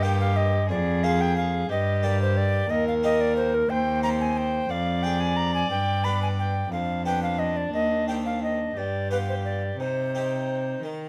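Closely miked with light reverb, this flowing, grave excerpt from a baroque-style sonata movement in 6/8 sets an airy, chiff-edged tenor recorder up front on the melody, a distant, nasal gut-string violin on the second line, a full, plucked French-style harpsichord on the accompaniment, and a rich, reedy solo cello on the bass.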